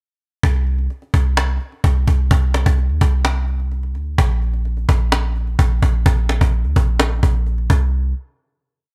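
A bouncy half-time trap beat at 128 BPM in 4/4 drives this short, eerie and menacing hip hop piece, played on an up-front cajon with hard hands, faint snares and sixteenth-note hats. The cajon has a woody, acoustic character and a small-room feel, entering at 0.4 seconds and stopping at 7.8 seconds. Beneath it, a clean 808-style bass holds long sub-bass notes that follow the kick, ranging from Bb1 to Eb2 with pitch slides. Its sine tone is deep, boomy and dark, with a fast attack and a decaying tail, and it sits up front and slightly louder than the cajon. Studio reverb surrounds the mix, and after the verse the bass lingers briefly into a final hit that closes the piece at 8.9 seconds.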